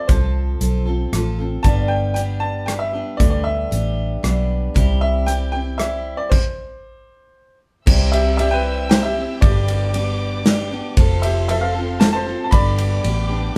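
Easygoing and nostalgic, this cut from a longer honky-tonk and classic country piece moves at 116 BPM in a straight 3/4, centred on G mixolydian with a few chord changes among F, G and C. A bright upright piano carries the melody with a woody, brilliant tone and short sustain, while a picked steel-string acoustic guitar fills in the accompaniment with dreadnought body and audible finger squeak. Underneath, a vintage muted fingered electric bass sits up front, dark, round and punchy from its foam mute and amp, and a natural country drum kit works through kick, snare, hi-hat, rim click, ride and crash with a punchy kick and medium-tuned snare in a small-room sound. The band breaks into a stop from 6.3 to 7.9 seconds, after which a symphonic violin section enters in the background at 7.9 seconds with lush, bowed sustained chords, soft attacks and expressive vibrato. The whole group sounds like it was playing live in one room, wrapped in moderate studio reverb.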